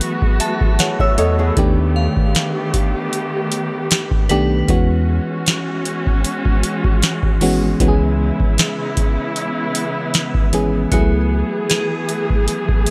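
Sensual and longing, this brief contemporary R&B excerpt moves at 77 BPM in C# minor with a lightly swung sixteenth-note feel, as a warbling, vintage FM electric piano opens with a fill over smooth, bowed studio strings and a booming analog drum machine with a deep kick, crisp snare and metallic hats set up front. A fingerpicked flamenco guitar flickers through arpeggios with digital delay from 1.0 to 1.8 seconds, while a deep, full sub bass with octave holds the low end from 1.2 to 11.4 seconds. A crystalline synth bell with chorus and delay glints in the background over chords moving from F#m11 through B7alt/D#, E69 and C#m7, all in a dry sound.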